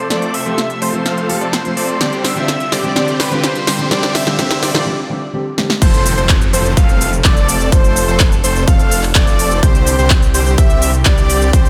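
A lush hall reverb and a punchy, tape-warm, up-front drum sound frame this euphoric, uplifting cut of festival progressive house at 126 BPM in straight 4/4, taken from a longer piece. The opening build-up pairs a huge, detuned supersaw riff, pumping and low-pass filtered with dub echo, with an airy, dreamy sine lead carrying the melody in chorus and echo. Beneath them sit a dark, mellow concert grand, distant biting symphonic strings holding very quiet chords, and faint electronic risers and downlifters. The big-room kit drives a drum fill of crisp hats, snare, claps, shaker and crash, and the chords move between F and Csus2. After a brief break at 4.9 seconds, the drop lands at 5.8 seconds with a hard-hitting electronic kick, a thick, chorused detuned saw bass and a bold, vibrato-tinged unison lead spinning arpeggios, the bass and lead both pumping with the sidechain.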